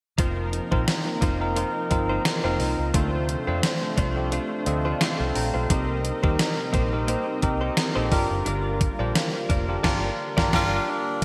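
A gated digital drum machine sits up front in this dramatic, nostalgic fragment of 1980s-style pop, its thumpy kick and overdriven, gated-reverb snare sounding re-recorded in a small room. The groove moves at 87 BPM in 4/4 with a light swing on the sixteenths, tuned to A4 = 435 Hz, and runs through F7sus4, Dm7, Cm7 and Gm7. A dark, round, foam-muted fingered bass holds the low end with punch. A bell-like tine electric piano carries the accompaniment with shimmer reverb and plays a fill from 4.3 to 5.7 seconds. Behind it, a compressed, scooped clean guitar riff with chorus, delay and shimmer trails blends with fat, warbling synth brass stabs and a very quiet, swirling phased pad of sustained chords. Near the close, a clear, close-miked tenor saxophone steps forward with vibrato at 10.5 seconds during a band accent, all set in a lush hall reverb with a bright digital sheen.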